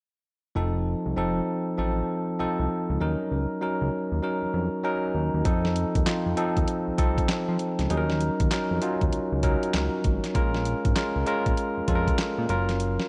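Bouncy and confident, this new jack swing cut from a longer R&B piece moves at 98 BPM in 4/4 with a swung sixteenth-note feel. A barky, bell-like tine electric piano sits up front from 0.6 seconds, its bright, direct tone carrying the harmony through F7 and Ebm7 before moving on to Bbm7 and Gbmaj7. Beneath it, a fat analog bass enters at the same moment, thick and saturated, blending sawtooth, square and triangle waves with detuning, ring modulation and a filter sweep, its fast attack giving way to a sustained, mellow body. At 5.5 seconds a clean 12-bit digital drum machine arrives up front, with a thumpy kick, a fat snare, handclaps and hi-hat lending a sampler-style electronic punch. A moderate, lush hall reverb wraps the mix in a spacious sheen.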